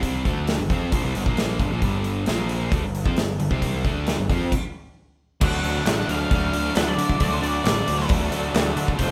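Swaggering and brooding, this classic rock excerpt at 134 BPM drives two overdriven guitar riffs, one dark and one very quiet and crunchy, over a growly fuzz bass and a punchy, up-front drum kit with bright cymbals through a stop at 4.5 seconds, after which a distorted octave-fuzz lead guitar with wah and a very quiet, thick rotary tonewheel organ enter at 5.4 seconds, joined at 5.9 seconds by hollow group handclaps, all in a moderate live-room reverb.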